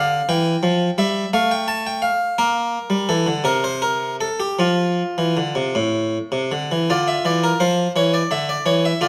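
Close, detailed microphones catch every pluck up front, while a moderate recital-hall reverb lends the sound a gentle halo. This short excerpt is cut from a longer piece: a classical, baroque-style suite movement for solo harpsichord in 6/8, played with a free, rubato feel. The instrument, strung with a single set of strings in the French manner, has an airy, round tone that stays intimate rather than brittle. Its range spans A2 to A5 as it moves through a few sparse harmonies, with passages between them where the chords fall away. The opening idea returns at 6.9 seconds, and the music settles toward a suspended close by 9.1 seconds. The mood is introspective and solemn, like a quiet moment of reflection within a larger dance.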